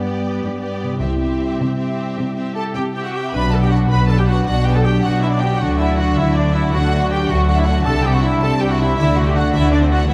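Cinematic heroic adventure score in 12/8 at 105 BPM in D mixolydian, this triumphant, soaring excerpt builds over its first 3.3 seconds as a rich, vibrato-laden violin section carries the melody above a distant second violin line, lush violas, mellow soft-attack French horn chords, a ringing thumb-plucked harp in arpeggios and smooth background cellos, with up-front double basses entering at 1.0 seconds and distant, bright trumpet stabs arriving at 2.6 seconds, all set in a wet scoring-stage reverb.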